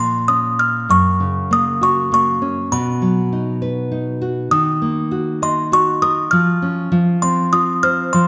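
In a straight 3/4 lilt at 100 BPM, this wistful, dreamy children's lullaby excerpt sets a delicate, tinkling, slightly out-of-tune music box melody up front against a full-bodied, fingerpicked nylon-string guitar accompaniment, both playing throughout the 8.3 seconds, as moderate concert hall reverb surrounds chords that drift from Bbm through Gb, B and Ebm before settling on F5.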